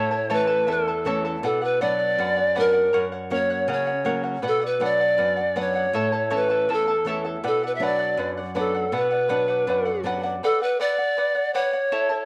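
In a straight two-beat pulse, this wistful, earthy Andean folk fragment sets an airy, up-front wooden pan flute melody with chiff, crisp attacks and vibrato over a shimmering fingerpicked charango with double strings and a fingerpicked flamenco guitar with finger squeak, which drops out at 10.4 seconds while the flute and charango carry on through a wet spring reverb in a small room.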